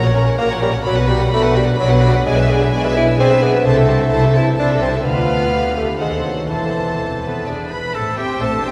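A present, solo bassoon supports this sneaky, magical cinematic passage in A minor, moving in 3/4 at 128 BPM over a soft-edged bed of sul tasto chamber strings: violins carry the melody and a second line, while violas, cellos and dark double basses fill the accompaniment and bass with vibrato. A bright, ringing concert harp adds very quiet fingerpicked arpeggios, and the harmony winds through diminished chords before settling on A minor. A clear, distant clarinet joins at 7.2 seconds, and a mellow, hollow flute and a punchy French horn section slip in at 8.4 seconds, all inside a wet cathedral reverb in this short cut from a longer piece.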